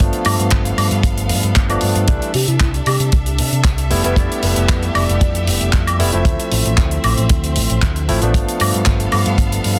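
A dry, tight kick and a damped 70s kit of handclaps, hi-hat and woodblock open this feel-good, groovy nu-disco excerpt together with a dark, punchy picked bass through an envelope filter and a barky tine electric piano carrying the accompaniment with sampler grit and tape echo. A lush studio violin section holds bowed chords full of vibrato and portamento, with sidechain pumping, over a progression that runs from G9 through C69, Fmaj9#11 and Dm9 before returning to G9. From 2.3 to 5.7 seconds a soft, round, octave-layered synth lead sits in the background with chorus, phaser and tape echo, all inside a small room and a dense, heavily limited modern master.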